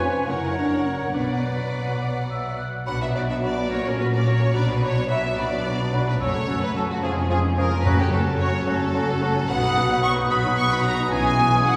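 Cheerful and graceful, this short passage cut from a quick classical-period symphonic movement in a rubato 6/8 sets a rich, vibrato-laden violin melody over a second violin line, clear oboe, very quiet clarinet and a hollow, mellow flute group, while viola, mellow bassoon, dark horn chords and a distant double bass with cello anchor the harmony, round soft-mallet timpani touch in briefly from 6.2 to 8.6 seconds, and the whole orchestra blooms in a wet concert-hall reverb.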